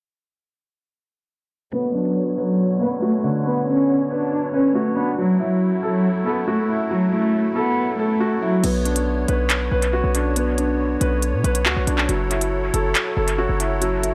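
A half-time drill groove lands at 8.6 seconds, with crisp electronic hats, handclaps and a crash cymbal cutting through dub echo, joined by a punchy, heavy 808-style bass with a fast attack and decaying tail. Before that, from 1.7 seconds, a filter sweep shapes the opening as a dark, nasal bowed cello carries the tense, menacing melody with vibrato and portamento until the beat arrives. Beneath it, a soft, intimate felt-muted upright piano plays throughout alongside a reedy, shimmering musette accordion holding sustained chords, all of it set in a small room with light reverb in an echo-heavy hip hop drill mix.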